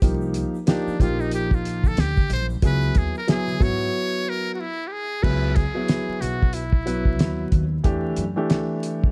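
Swung sixteenths drive this mellow, nocturnal jazz-hop fragment, where a cloth-damped, thuddy drum kit with a fat snare, tight kick and dark cymbals sits up front under 12-bit sampler grit, joined by a woody pizzicato upright bass and a dusky baby grand piano whose action noise and long sustain feel intimate. Distant egg shaker and congas play very quietly until 3.9 s, when a break arrives, and a buzzy, breathy trumpet with a metal mute carries the jazz melody from 0.7 s to 7.5 s with light vibrato and scooped notes. Vinyl crackle and small-room ambience surround the cut-off passage as the chords drift through minor sevenths and a richer minor ninth before settling on Em7.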